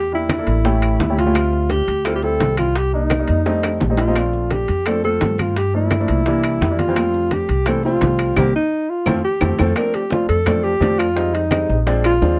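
A dark alto saxophone with vibrato and scooped notes opens this lively, sophisticated Afro-Cuban jazz excerpt over an up-front pizzicato upright bass, joined by an intimate upright piano with audible action noise, ringing low-tuned congas, tight high-tuned bongos, woody claves and metal-shelled timbales in a nearly reverb-free sound, with a drum fill at 3.5 seconds and a band accent at 8.4 seconds before a new section begins at 9.8 seconds.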